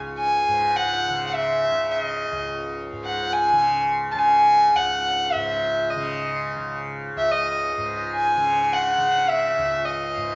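This Hindustani classical excerpt in raga darbari on C# moves at 106 BPM in a 7/4 metre, with a longing, meditative mood. A softly plucked tanpura sustains a buzzing, shimmering drone low in the mix from the start, and a single bowed violin enters at 0.2 seconds with the melody up front, its sul tasto tone nasal and pure with a soft attack. A moderate recital hall reverb surrounds the players, and the sound is gently rolled off in the highest frequencies.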